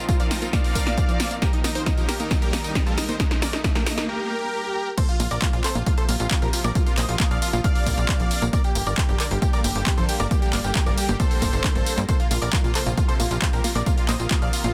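A huge, thick supersaw lead carries the melody through this soaring, uplifting trance excerpt at 135 BPM in Bb major, pumping with sidechain and trailed by tape echo over a lush, phased supersaw pad, a quiet detuned unison pluck arpeggio and a faint electronic riser. A punchy, dry analog kick sits up front beside an overdriven techno kit of crash, claps, hi-hat, snare and tambourine, building through a drum fill and a short break. At 5.0 seconds the drop arrives, bringing in a bright, worn grand piano line in the background and, a moment later, a tight, nasal sequencer bass under a dense, heavily limited master.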